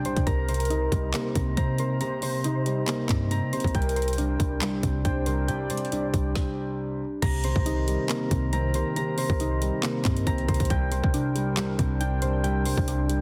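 A dark, mellow grand piano with audible action noise and soft, warbling electric-piano-like synth keys with chorus and tape echo open this brooding, melancholic trap excerpt in C minor, joined at once by an up-front trap kit with a hard-clipped kick, woody snare, metallic hats, handclaps and crash, plus a deep, boomy, clean 808-style bass at a half-time 138 BPM. A velvety, detuned synth lead with vibrato, chorus and tape echo sits in the background over Cm7 and Gm/C until 6.3 seconds, and a brief stop follows at 6.4 seconds. From 7.2 seconds a moody, detuned analog pad with a moving notch and slow attack fills the background in a dense, heavily limited modern mix with light reverb.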